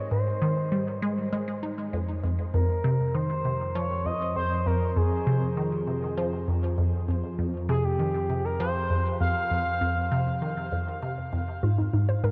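A vast, moderate reverb with a very long tail surrounds this short cut from a longer piece of ambient, sequencer-driven space music, giving it an expansive, hypnotic mood at 99 BPM in a straight 4/4 and F minor. Most prominent is a juicy, squelchy blip pluck carrying the riff, its detuned square and sawtooth layers, noise and resonant filter pluck colored by phaser and tape echo. Beneath it, an evolving analog drone holds the low register with vintage pulse-width warble, slow attack and long release under chorus. A smooth, expressive sawtooth lead with vibrato sings the melody up front through chorus and tape echo until 11.0 seconds. At 11.6 seconds a lo-fi, dusty pluck enters with brief chorused arpeggios as the harmony, which had moved from Ab to F5, returns to Ab.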